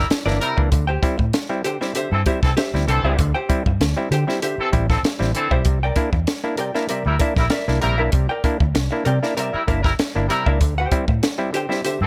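Horns, clav and bass open together on a C9 chord, joined within a fraction of a second by hollow-body guitar and a compact cocktail drum kit, in this short, strutting funk excerpt in straight 4/4. The tight, up-front horn section carries a second line with light vibrato and a vintage jazz-style sheen, while the mellow clav adds stringy, percussive stabs. Underneath, a foam-muted fingered electric bass sits dark and round, and the clean, compressed jazz guitar comps in a higher register with a picked, dark tone. The dry drum kit sits up front with a punchy kick, high-tuned snare and hi-hat. The harmony alternates between C9 and D9sus4, all framed by a small-room ambience that gives the funky groove an intimate feel.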